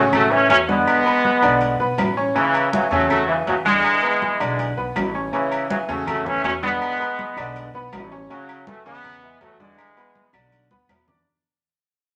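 A studio reverb gives this short salsa cut a wet, roomy sound, and the whole passage fades out as it plays. At 162 BPM in a straight 4/4, the mood is festive and danceable, moving through chords such as A, Bm13, E7sus2, A6 and E13. Up front, a punchy trombone section carries the melody with a bright, vintage, pop-style ensemble sound and light vibrato, dropping out at 10.3 seconds. A brilliant, worn concert grand piano with a deep low end accompanies, while a dark, woody pizzicato upright bass anchors the bottom. The percussion has ringing, compressed and saturated metal-shell agogo bells and timbales, high-tuned, damped congas played with soft hands in the background, and very quiet, close and dry claves, with a drum fill arriving at 10.7 seconds.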